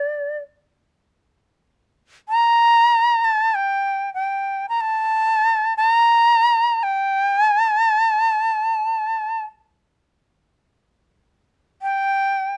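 Japanese traditional chamber music in free time, this austere, calm fragment features a solo bamboo shakuhachi, airy and reedy with vibrato and a soft attack, sitting up front in a close, dry recording as it moves between D5 and Bb5 and slows down from 9.0 to 12.6 seconds.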